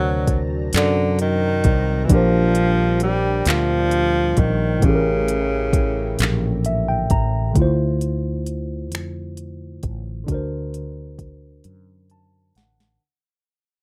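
A breathy tenor saxophone sings a yearning, sultry melody up front with light vibrato, dropping out at 6.7 seconds in this slow six-eight R&B piece cut from a longer work. A worn, slightly out-of-tune electric piano heard through a combo amp plays accompaniment with fills, while a round, punchy fretless bass anchors the low end and a thick, warbling detuned pad hums very quietly beneath until 7.5 seconds. An electronic drum kit with finger snaps, handclaps, a sharp snare and crisp overdriven hats enters at 0.3 seconds and adds a fill as the rough home-demo mix fades out over a light reverb.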